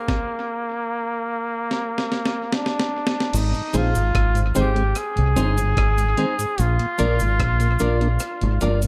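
Lightly reverberant and sunny, this roots reggae excerpt opens with a brilliant, up-front trombone melody carrying dub echo over gritty, pitched-up sampler-style drums with tape echo and a fill from 1.7 s; at 3.3 s a deep, round dub bass enters, followed by a close, dry cabasa, a mellow tonewheel organ through a slow rotary speaker, a clean picked electric guitar with dub echo, and barky reed electric piano stabs, these last four sitting in the background.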